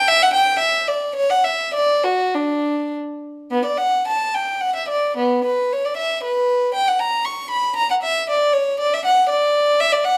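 This is a classical, baroque-style suite movement for unaccompanied violin, cut from a longer piece, with a solemn and grave mood. A single bowed violin carries everything in triple metre, shaped with a flexible, rubato feel. Its gut-string, period-style tone comes across as rich and reedy, placed close and up front, and ranging from B3 up to C#6. A stone room adds a one-second reverb that seems heard from further back in the space, giving the solo line a resonant halo. The opening material begins again at 3.5 s and continues until the violin stops at 10.2 s.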